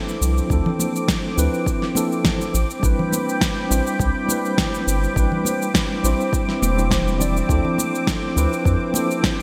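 A bright 1980s-style digital production, bathed in a moderate hall reverb, gives this sunset chillout excerpt a smooth, relaxed glow with a light swing on the sixteenths. A mellow, clean tine electric piano, heard as if through built-in speakers and shaded by a low-pass filter and digital delay, carries the chords from Dm7 to a rootless Am11 at 2.5 seconds and back to Dm7 at 7.5 seconds. Behind it, a thick, warbling unison pad of detuned sawtooth and square waves holds vintage, full-bodied chords with a slow attack, long release and chorus. A round, dark analog bass with a deep sine-like tone and fast attack sits up front from 0.2 seconds. The layered electronic drums pair a deep, tape-toned kick with a fat, up-front snare and cabasa treated with gated reverb, while bright, high-tuned congas with a thin skin patter in the background of a live room.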